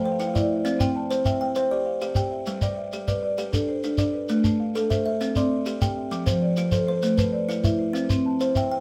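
A rippling cycle in twelve-eight drives this cut from a longer piece of southern African traditional music, opening with a brief marimba fill before the shekere joins at 0.2 seconds and the interlocking pattern settles in. Up front, a buzzing kalimba spins bright, woody arpeggios with a hollow-box ring, while a soft-mallet marimba weaves round, mellow arpeggios beneath it over chords that turn among A minor, C, G and F. The close, dry shekere adds a grainy pulse, and a small room lends the whole a gentle, warm glow.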